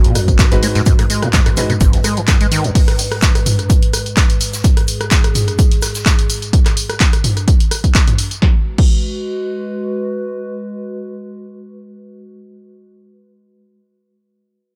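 A 127 BPM 4/4 groove swung on the sixteenths drives this hypnotic, trippy acid house piece in G# minor pentatonic, where a punchy electronic kick sits up front beside an analog drum machine of claps, hi-hats, rim clicks, snare, tambourine, toms and crash, while a very quiet soft-mallet kit adds a natural, hall-tinged snare, hi-hat and shaker. A squelchy, resonant sawtooth acid bass with a filter sweep, overdrive, 12-bit sampler grit and dub echo plays its riff only until 2.7 s, and a boxy, intimate grand piano throws brief echoing stabs. Throughout, a warbling, detuned, lo-fi pad holds dark, sidechain-pumped chords over G#m7 until 13.0 s, all set in a small room.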